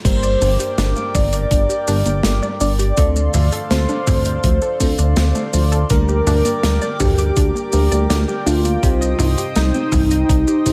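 A straight 4/4 pulse at 82 BPM carries this cinematic, nocturnal synthwave excerpt in G minor, with an overdriven, thumpy electronic kick and a modern studio kit of bright cymbals, medium-tuned snare, hi-hat, shaker, toms and crash, the kit drenched in gated reverb, both entering at 0.1 s. An up-front, glossy chorused synth bass joins them, anchoring the progression of Gm, Dm7, Gm/D and Cm. Above, a velvety sawtooth lead with vibrato, chorus and digital delay sings the melody, shadowed by a dreamy FM electric piano with a soft pad layer playing a second line in the background. A shimmering, evolving pulse-width pad holds sustained chords that pump under sidechain, while a warbling, lo-fi pluck spins arpeggios through chorus and tape echo. A very quiet second FM electric piano adds phased stabs, and the whole mix sits in a small room reverb.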